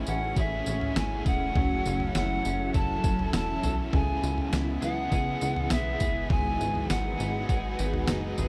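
A detuned 8-bit drum machine sits up front in this melancholic, ethereal dream pop excerpt, its thumpy kick, medium-tuned snare, tambourine and toms sounding as if re-recorded in a large room. At 101 BPM in C# minor, a punchy, funky analog bass plucks out the low end with sawtooth and square-wave tones that snap and decay, under a chord cycle of Amaj7, F#m7, C#m7 and G#m7. A raw, double-tracked garage guitar adds overdriven, tremolo-tinged accompaniment, while a twangy, slightly broken-up electric guitar through a small old amp picks arpeggios in the background with tape echo and shimmer reverb. A blurred, evolving granular pad holds mellow sustained chords, and from 1.5 seconds a very quiet glassy texture drifts in with calm overtones. Over it all, a close-miked pan flute carries the melody with airy chiff and vibrato, its tape echo and shimmer reverb trailing through a dark production with digital ambience.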